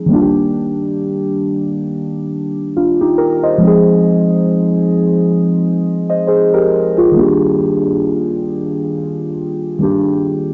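A lightly swung 16th-note feel at 68 BPM in 4/4 sets an unhurried, dreamy hip hop pace for this brief excerpt in Eb major, where muted, felt-like synth keys play alone throughout its 10.5 seconds, moving from Ebmaj7 to Fm7 and back to Ebmaj7. The keys sit up front with a dark, intimate tone, quick attacks and decaying notes, colored by chorus, phaser, cassette tape character and a low-pass filter. A wet, small room reverb and a top end that stops at 7.6 kHz give the piece a soft, nostalgic haze.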